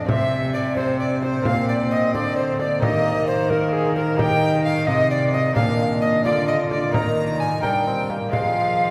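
Classical renaissance-style consort dance in a solemn, rustic 6/8 at 88 BPM, where a gut-strung violin carries the melody beside an airy, chiffy tenor recorder sitting up front with vibrato, over a clear, soft-attacked bassoon, a delicate fingerpicked lute in the background, a dark bowed cello bass, and a small, dry frame drum played with soft hands from 0.1 s, all moving through chords such as C, Bb, Eb and Fm and bathed in a long, wet cathedral reverb in this brief excerpt cut from a longer piece.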